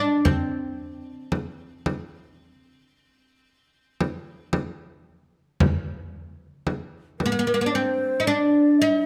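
Arabic maqam ensemble excerpt, festive and warm at 113 BPM in a straight 10/8. A woody, deep, fretless oud with plucked double strings carries the melody up front from the start, while a large acoustic frame drum, played dry with hard hands, joins at 0.3 s and drops out at 7.4 s. A breathy, mellow end-blown ney adds an expressive, tongued second line with vibrato from 7.2 s, all in a close, detailed recording with light reverb.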